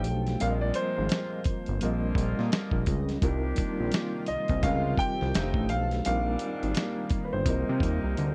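An 85 BPM groove in 4/4 with a 16th-note swing opens this introspective, soulful neo-soul excerpt, where a gritty, compressed sampler-style drum kit with a thumpy kick sits up front beside a fat, detuned sawtooth bass with a filter sweep, while a polished grand piano carries the melody with slapback echo over a reedy electric piano with fast tremolo, a shimmering chorused pulse-width pad in the background and tight, vintage horn stabs with light vibrato, all in a dry, close 1970s-style studio sound moving through chords such as Bb13sus4, Cm11 and Dbmaj9#11 before a drum fill at 8.2 seconds.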